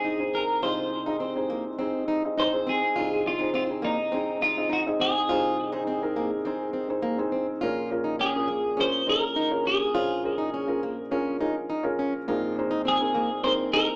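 A rough home demo with a small-speaker sound and a wet studio reverb frames this dramatic, earnest pop passage in Bb minor, moving at 103 BPM in a straight 4/4 and cut from a longer piece. Up front, a bright, twangy twelve-string electric guitar carries the melody through lush chorus and plate reverb, while a soft, felt-muted upright piano adds intimate, mellow accompaniment bathed in its own plate reverb. Beneath them, a plugged-in steel-string acoustic guitar with old strings picks a woody, full-bodied riff, as the harmony shifts from Ab/C to Bbm7 at 7.6 seconds and settles on Abadd9/Bb at 12.3 seconds.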